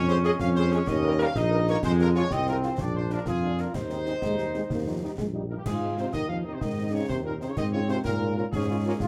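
Set in a moderate large-studio reverb, this festive, proud snippet of a military-style wind-band march in Ab major moves at 125 BPM in a straight 6/8. A distant, roomy trumpet section carries the tight classical melody over soft-attacked, vintage-toned trombone chords and background French horns with light vibrato, while a dark tuba sits up front on the bass. Concert snare, bass drum and clash cymbals sound close and dry throughout, and a close-miked solo euphonium adds a second line from 4.2 s, just before the music moves into a new section at 5.7 s.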